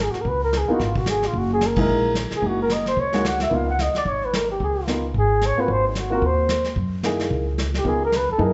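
Warm and sophisticated, this fast small-group swing and bop passage moves at 222 BPM in 4/4 with a light swing feel, centred on D-flat mixolydian and cut from a longer piece. A trumpet in a bucket mute carries the melody up front from the start, its dark, veiled tone shaded with vibrato and scooped notes in a vintage jazz style. Pizzicato upright bass with a woody, shadowy sound anchors the low end, while a brushed drum kit with a medium-tuned snare, punchy kick, hi-hat and ride slips in at 0.1 seconds with a rolled-off top. A present baby grand piano joins the accompaniment at 0.7 seconds, moving through Gb13, Db13 and Ab harmonies, and the whole band hits a shared accent at 1.8 seconds. The group sounds heard from further back in a large studio, bathed in generous reverb, with a mellow, softened high end.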